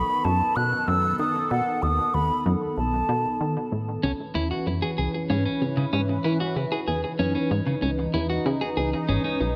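Ambient, sequencer-driven space music in C# minor at 95 BPM, this mysterious, cosmic excerpt opens with a mellow, hollow silver concert flute carrying the melody through a delay until 3.7 s, over a sweeping, detuned resonant pad and a punchy, funky analog bass riff with a wave-folded, ring-modulated bite. At 4.0 s, as the harmony shifts from B7 to C#m7, a clean, picked electric guitar enters with delayed arpeggios. A plate reverb gives the whole an airy, lingering space.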